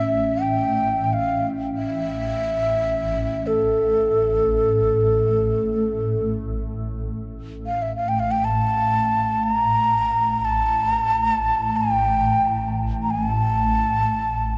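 Haunting and spacious, this free-time world meditation music in A phrygian dominant is cut from a longer piece, carried by a breathy, mellow low xiao whose end-blown bamboo tone, vibrato and soft attack sit up front over a dark, shimmering ambient pad that holds a low drone with chorus, phaser and an evolving, granular octave-up glow. A felt-mallet bronze singing bowl rings softly in the background with slow beating and a boxy small-room quality until 7.4 seconds, while a huge ambient reverb with a 9.0-second tail bathes the recording in ethereal space.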